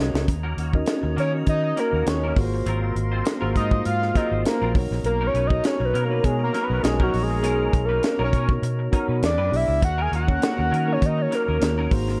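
Polished and lightly roomy, this cut from a longer piece of nocturnal, urban 1980s jazz-funk pop in Eb minor moves at 101 BPM with a swung sixteenth feel, as a tight funk drum kit with a high-tuned snare and gated reverb and a dark, round, foam-muted fingered bass sit up front beneath a mellow tine electric piano with lush chorus, a clean, compressed semi-hollow guitar riff with ensemble chorus and a pure, bright flute section holding vibrato chords in the background, while a fat, detuned sawtooth analog lead with sub octave and tape echo takes the solo from 1.2 s over chords moving from Ebm7 through Ab13 and Bmaj9 to Em7 and back to Ebm7.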